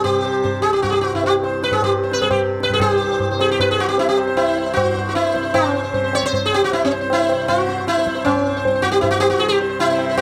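An up-front, plectrum-plucked sitar with buzzing, shimmering sympathetic strings carries the melody in raga puriya dhanashri on C through this devotional, meditative Hindustani classical excerpt in 7/4 at 154 BPM, set over a softly plucked, low tanpura drone and dry, low-tuned tabla with a short ring, with a new section arriving at 2.8 seconds as the pace gradually quickens, all captured with close, detailed microphones and light reverb.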